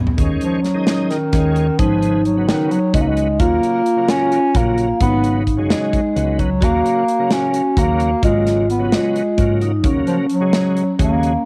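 A mellow, softly scooped bass clarinet carries a tense, intricate melody up front in this progressive instrumental band excerpt in 7/8 at 261 BPM (eighths), moving between Ebm7 and Abm7 chords in Eb minor over a round, dark hollow-body picked bass, a tight acoustic drum kit that opens with a fill, a shouting, lightly overdriven tonewheel organ with chorus vibrato and slow rotary, and a ringing, soft-mallet vibraphone with slow motor vibrato, all in a small, lightly reverberant room with the lo-fi character of a home cassette recording.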